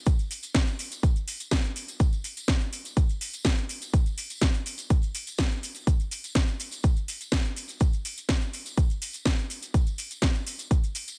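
A punchy, layered electronic kick drum sits up front in this groovy, nostalgic house excerpt at 124 BPM in a straight 4/4, running from 0.1 to 10.8 seconds. Alongside it, a house drum kit of hi-hat, shaker and snare carries a cracking snare and metallic hats, all with a tape-warm character from being re-recorded in a small room, and its hats, cymbals and percussion pump through sidechaining. Further back, a tambourine blends with maracas and a group handclap in an acoustic small-room sound, its percussion pumping as well. The kit and tambourine both play through to 11.2 seconds in a single unbroken section. The mix is dry with little reverb, and its top end stops short of 10.7 kHz, giving the whole a dusty, rounded sheen.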